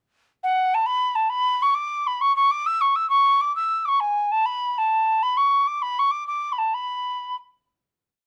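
A lone metal whistle carries this short, complete Celtic slide in B dorian, its airy, mellow tone touched with vibrato and a soft attack as it plays solo from 0.4 to 7.4 seconds. The driving, wild tune moves at 133 BPM in a straight 12/8, built from motif-based period phrases, before a final hit at 7.6 seconds. Close, detailed microphones and light reverb give the performance a clear, intimate presence.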